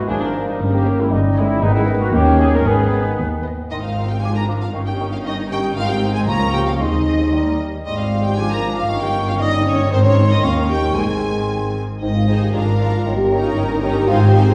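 A lively, cheerful classical-period orchestral movement in a brisk 2/4, cut from a longer piece, with a rich, lush violin section carrying the vibrato-laden melody while a second violin line and an airy, mellow silver flute weave secondary lines. Warm violas and a distant bassoon accompany, and soft-attack French horns hold sustained chords. Cellos and double basses anchor the bass throughout, and a dark trumpet section adds stabs only until 3.2 seconds, just before the music turns from minor to major at 3.7 seconds. The orchestra is heard from further back in a wet recital hall, giving the brass and bassoon a roomy, distant quality.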